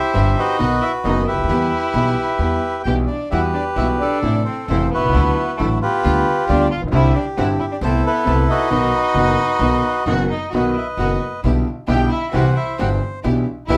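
Tense and dramatic, this rubato tango in E minor at 134 BPM, cut from a longer piece, puts a reedy, up-front bandoneon melody over a dark, bowed violin second line with vibrato, an intimate concert grand piano whose action noise is audible, a growly pizzicato upright bass, and lush symphonic string stabs kept in the background of a moderate studio room.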